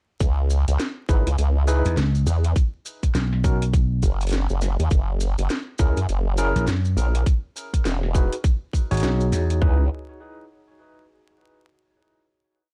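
A swung, broken glitch hop beat struts from the start, with a tight, up-front kick and floor toms under cracking snare, metallic hats and close, grainy maracas in hand-played sixteenths. A detuned sawtooth wobble bass wobbles through a formant filter with changing wobble speed, joined at 1.9 s by a bright, growly slap bass whose chopped phrases answer it, while from 1.1 s a barky, overdriven electric piano adds sparse, echoing rootless stabs with fast tremolo and sidechain pumping. The funky, swaggering drop moves through C#m7, B, F#7 and Emaj7 in a dark, dry production dusted with vinyl crackle, landing on a final C#m7 at 9.6 s.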